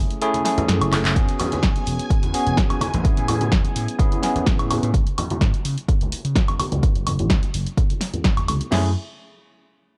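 Punchy kick, snare and crash from an analog drum machine arrive at 1.2 seconds to drive this sensual, nostalgic filtered disco house excerpt, alongside a second drum machine of handclaps, hi-hat, snare and woodblock in a short room that has played since the opening, an amped, tube-saturated slap bass under a sweeping low-pass filter, a bell-like, phased tine electric piano that drops away at 4.9 seconds and returns at 8.7, ringing maracas and congas in a distant large room, and a swirling sawtooth string machine with ensemble chorus in the background, with most parts pumping against the kick through a gritty cassette-tape sound.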